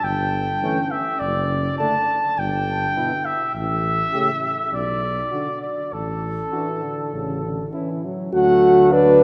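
A wet church reverb surrounds this excerpt from a longer classical brass quintet in D major, noble and triumphant at a straight 102 BPM in 4/4. A warm trumpet with vibrato sings the melody up front from the start over a dark, smooth-topped tuba bass, and at 0.6 s a mellow French horn enters with soft-attack accompaniment, joined in the background by a distant, roomy flugelhorn second line and a close-miked trombone. The harmony moves from A7 over G through D, E minor and B minor before settling on D at 8.3 s.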